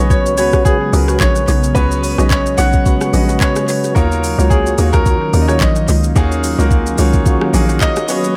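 Soulful and late-night, this amapiano excerpt moves at 109 BPM in Eb minor with a light swing, drifting between Db7sus4 and Ebm9 under a clear concert grand piano that carries an intimate, tape-echoed melody over its own open, deep-voiced accompaniment, with audible action noise. A glassy, ethereal FM pad sustains chords with ensemble chorus, built-in reverb and sidechain pumping, while a soft, flute-like tonewheel organ adds percussive stabs in the background through chorus vibrato, a slow rotary speaker and tape echo. A hollow, bouncy log drum bass sits loudest in the mix, joined at 0.1 seconds by an up-front smooth R&B kit of soft kick, hi-hat, rim click, shaker and echoed handclaps, all within a lightly reverberant, echo-heavy sound.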